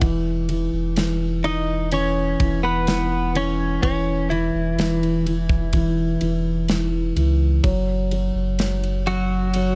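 Pop ballad in C# minor at 63 BPM, heartbroken and melancholic, where a dark, woody upright piano accompanies while a deep, thick saturated sub bass holds the low end over an up-front acoustic drum kit of punchy kick, medium-tuned snare and bright ride cymbal, until a clean, compressed electric guitar with subtle chorus enters at 1.4 s to carry the melody, all set in a dark, warm studio ambience, cut from a longer piece.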